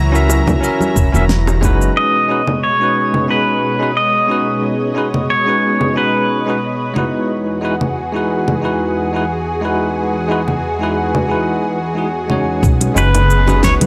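A twangy pedal steel guitar carries the melody up front, its clean, compressed slide tone and volume swells trailing tape echo and shimmer reverb; it drops out at 6.9 seconds and returns briefly near the close. This is a blissful, relaxed sunset chillout piece in B major at 90 BPM in 4/4, with a gentle swing on the sixteenths, cut from a longer piece. Beneath it, a lush, thick unison pad of detuned sawtooth and square waves holds slow-attack chords through chorus and shimmer reverb, and a filter sweep on an analog synth pad runs from 2.0 to 12.6 seconds, while a bell-like tine electric piano plays bright, clean accompaniment treated with analog delay. A smooth R&B drum kit with a fat snare, metallic hats, cabasa and congas runs almost throughout, its sound overdriven. The woody, dark pizzicato upright bass, the deep, tape-toned electronic kick and background bongos and congas appear only in the opening seconds and again from about 12.6 seconds. 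Chords move from F#7 to B69 and Emaj9 before settling back on B69, all captured in a dry, gritty recording with light reverb.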